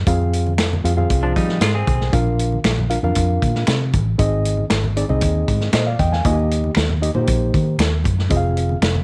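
Light small-room reverb frames this short cut of uptempo 1960s-style soul in F dorian, moving at 116 BPM in a straight 4/4 with a passionate, driving mood. Up front, a dark, round, foam-muted fingered electric bass, a reedy, mellow electric piano heard through its built-in speakers, and a vintage drum kit with a punchy kick, medium-tuned snare and rolled-off top carry the Fm, Bb, Ab and Eb changes, while low-tuned, thick-skinned congas sit very quietly alongside band-limited finger snaps in the background. A clean, compressed semi-hollow electric guitar adds a brief riff between 1.2 and 2.1 seconds.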